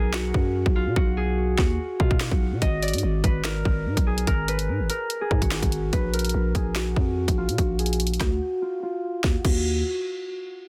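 The mix is dense and heavily limited, with little reverb, so every part sits close and up front. This is a cold, ominous drill track in a half-time feel, cut from a longer piece. A fingerpicked Celtic harp carries the melody with a ringing acoustic tone, shaded by a low-pass filter, a filter sweep across most of the passage, and a trail of tape echo. Beneath it, a growling, buzzy 808-style bass with a fast attack and a decaying sine body holds the low end. The electronic drill kit brings a hard-clipped kick, a sharp snare with soft clipping, finger snaps, rim clicks, warm hi-hats and crash cymbal. A break opens the passage and another arrives at 8.4 seconds, as the chords move from B5 through Abm and Bb5 before settling on Ebm at 9.2 seconds.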